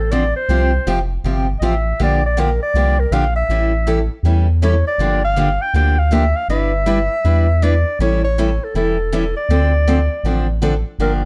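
Virtuosic and swinging, this short cut of acoustic string swing in D minor moves at 160 BPM with a lilting swung eighth-note feel, passing through chords such as Gm7/Bb, A7 and Em7/G before settling on Dm7 near 9.5 seconds. A mellow clarinet carries the solo melody up front with vibrato and a soft subtone, framed by plate reverb, while a bright, boxy picked parlour guitar supplies the accompaniment. Underneath sits a round, deep analog bass with a fast attack and sustained notes, all within a dark, lightly reverberant production.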